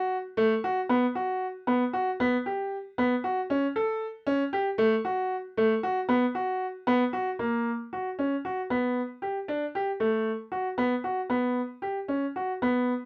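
A bright, brilliant concert grand piano plays alone and up front from 0.0 to 12.9 s in this pensive, restless contemporary instrumental cut from a longer piece, moving in 5/8 at 231 BPM counted in eighths with a straight feel in B minor, tuned to A4 = 441 Hz, its deep-bass resonance and long sustain ringing through light reverb across a range of A3 to A4 as the music shifts into a new section at 7.4 s.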